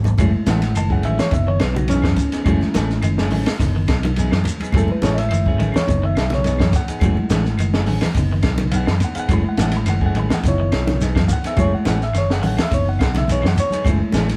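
Recorded as a band playing live in one room, this short cut from a longer afrobeat piece has a moderate studio reverb and a funky, intense mood at 105 BPM in 4/4, with a light sixteenth-note swing in F# dorian. A drum fill opens at 0.0 s on a compact cocktail kit that sits up front, dark and smooth with a high-tuned snare and a punchy kick, while a fingered electric bass adds a round, amped low end. A reedy, direct electric piano takes a solo from 0.2 s to the close at 14.4 s, riding a two-chord vamp that alternates between F#m9 and C#m9 over F#. In the background, a clean electric guitar plays stabs and a twangy, slightly broken-up second guitar picks arpeggios, both with a warm tone. Percussion fills out the groove: a grainy, mellow shekere close and dry, woody claves set far back, and very quiet congas with a thick skin.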